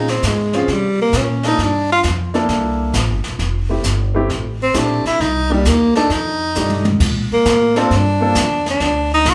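A live room sound with moderate large-studio reverb frames this relaxed, swinging small-group jazz clip in F major, taken from a longer piece and moving at 133 BPM in 4/4 with a swung eighth-note feel. A clear, close-miked tenor saxophone sits up front with soft attack and vibrato, supported by an intimate grand piano with audible action noise, a woody pizzicato upright bass, and an airy, polished brush kit with dark cymbals and a boomy kick. After a drum fill at 6.6 seconds, the saxophone takes a solo from 7.0 seconds over Bbmaj7 and D7 harmony, while the piano drops out at 8.3 seconds.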